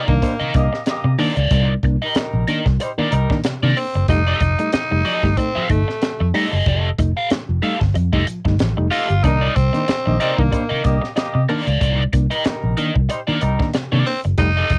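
Funk at 93 BPM in C dorian with a sly, hypnotic sixteenth-note swing, where a raspy, gritty tenor saxophone carries the melody over crunchy guitar with wah, reedy electric piano stabs with fast tremolo, a dark, foam-muted fingered bass sitting up front, and a crisp fusion kit with a high-tuned snare and punchy kick, while a tight horn section adds a second line from 0.2 to 3.4 seconds and again from 9.2 seconds, the chords moving from Cm9 to F9 and back in a dry home cassette recording.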